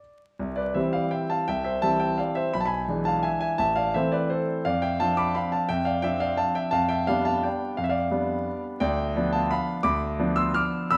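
Wistful and elegant, this excerpt of a classical piano waltz in 3/4 has a rubato feel, with a solo concert grand sitting up front, natural and clear with deep bass and long sustain, moving through C, E7/B, Am, Dm7/F, G7/F and Bdim/D inside a moderate recital hall reverb, with vinyl crackle over the sound.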